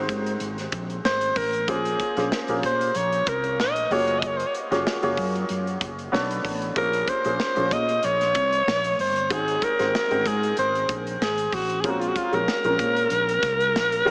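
A lightly swung 16th-note groove at 94 BPM in 4/4 drives this slick, nocturnal 1980s jazz-funk pop excerpt in Bb minor, where an airy modern studio drum kit with a punchy kick, a dark, round fretless electric bass and an intimate baby grand piano with audible action noise, the bass and piano both treated with analog chorus, support a raspy, gritty alto saxophone melody with vibrato that enters up front at 1.1 seconds, the mix soaked in a huge ambient reverb that lends a dreamy, small-speaker haze.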